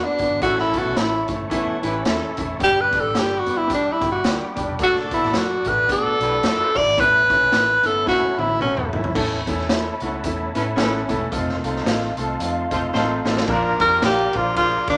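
Uptempo, danceable 1960s-style soul with a swung feel, where a breathy, up-front tenor saxophone solos over clear grand piano, a mellow organ with slow rotary shimmer, a twangy guitar riff with spring reverb, a round, foam-muted bass, a gritty garage drum kit with drum fills at 8.1 and 12.9 seconds, and a distant horn section playing a second line, all set in a large studio reverb.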